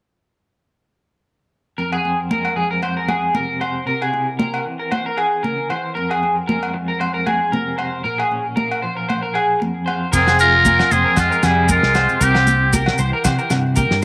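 Danceable and warm, this highlife guitar band excerpt moves at 115 BPM in F harmonic minor with a light sixteenth-note swing, opening at 1.8 seconds with a clean, picked guitar under tremolo, a twangy, slightly broken-up guitar playing arpeggios up front through lush chorus and tape echo, and thick-skinned high-tuned congas struck with hard hands, with ringing agogo bells joining a moment later. At 10.1 seconds the band fills out as a buzzy, growling trumpet with metal mute takes the melody through tape echo, joined by a bright trumpet on a second line, a round fingered electric bass, a damped 70s drum kit with a fat snare, tight kick and dark crash cymbal, and grainy maracas. Moderate spring reverb and studio ambience surround the band as the chords move between Fm, C and Bbm.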